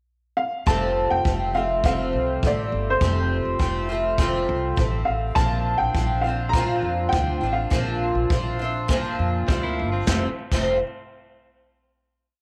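Set in a small room with moderate spring reverb, this easy-going, heartfelt acoustic pop piece in F major moves at 102 BPM in a straight 4/4, as a dark, slightly detuned upright piano with audible action noise plays a mellow hook-based melody from 0.4 s over a shimmering, octave-doubled, double-tracked twelve-string acoustic guitar that sits up front with boxy folk strumming, a thumpy, round pizzicato upright bass with slides, and a distant jazz brush kit with a boomy kick and stomp and clap, before a clean, compressed, direct-recorded electric guitar adds short fills in fourths at 9.5 s and the piece settles on a final Fadd9 chord at 10.1 s.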